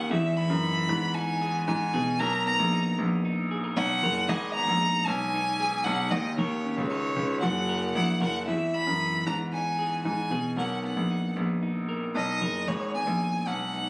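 A bowed violin with smooth vibrato carries the melody from the first moment, joined at once by a twangy, slightly broken-up electric guitar picking arpeggios through a small old amp with a warbly pitch drift, and a polished baby grand piano holding down the bass. This nostalgic, bright slice of jangly indie pop cycles through major-seventh and minor chords, starting from Emaj7, and shifts into a new section at 8.5 seconds. The violin and piano sit up front in a fairly dry sound captured on a phone in the room.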